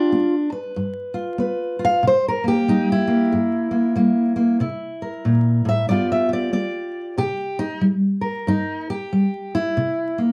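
This is acoustic country blues with a rollicking, swaggering mood, swung in four. A single fingerpicked steel-string acoustic guitar carries the whole performance, ranging from low G2 up to F5, and it has a warm, auditorium body that sits up front. The harmony moves between dominant seventh chords, G7 to C7 and back, before landing on C7 again. At 7.2 seconds the guitar steps into a solo for the closing stretch, which runs until 10.3 seconds. The sound carries a wet studio reverb, a sense of hearing it from further back in the room, and a layer of vinyl crackle, and the clip is cut from a longer piece.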